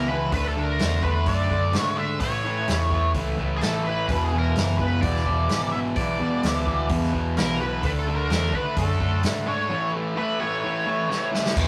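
A double-tracked, up-front fuzz guitar drives this swaggering, raunchy blues rock and southern rock excerpt at 128 BPM, riffing over D, A and E chords alongside a round, overdriven picked bass, while a dark octave-fuzz lead guitar with wah carries the melody and a vintage acoustic drum kit with a punchy kick, dark cymbals and a rolled-off top enters at 0.3 s and closes with a fill at 11.1 s, all captured in a rough rehearsal-room recording with moderate reverb.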